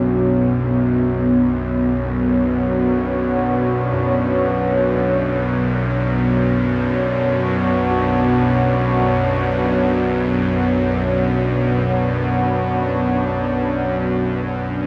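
Dark ambient drone in free time, ominous and vast, where a deep, moody, chorused pad holds sustained chords up front over a tense, string-like bowed drone, while bronze gamelan-type bossed gongs enter at 3.9 seconds and gradually fade in behind them with metallic, beating arpeggios and tape echo, all set within a huge, wet reverb.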